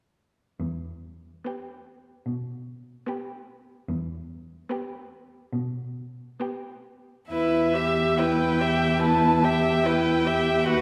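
A veiled, con sordino violin carries the melody in this solemn, elegiac excerpt from a slow romantic string quartet movement in E minor, moving at about 71 BPM with a rubato, unevenly paced 4/4. A muted cello with light vibrato opens the bass line at 0.6 seconds, joined by a dark muted viola in accompaniment at 1.4 seconds and, at 1.5 seconds, by both violins, the second tracing a soft-edged line beneath the melody. The quartet sits back in a wet scoring-stage reverb as the passage moves from its opening section into a second at 7.3 seconds.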